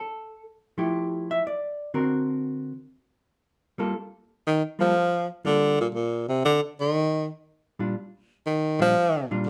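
Jazz in a moody, cool swing, where a dark, clean hollow-body electric guitar plays fingered chords up front from the start through lush harmonies like Fmaj9 and Gm9, joined at 4.5 seconds by a clear, close-miked tenor saxophone taking a soft-attacked solo melody with vibrato, all in a moderate studio reverb on this short cut from a longer piece.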